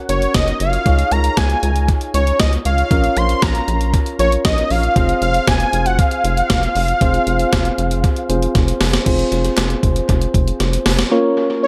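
Synth-pop at 117 BPM with a cool, nocturnal mood, this excerpt moves through Gb, Dbadd9, Bbm and Fm in an echo-heavy mix with light reverb and digital ambience. An up-front, tape-warm 80s drum machine with a thumpy kick, gated reverb snare, handclaps, hi-hat and crash sits beside a rubbery, hollow square bass with a resonant filter pluck, while soft, round electric-piano-like keys carry chorus beneath a thick, detuned unison lead that sings the melody through analog delay and vibrato. The lead drops out at 8.6 seconds as drum fills usher in a short closing section, and it returns only briefly at 11.6 seconds.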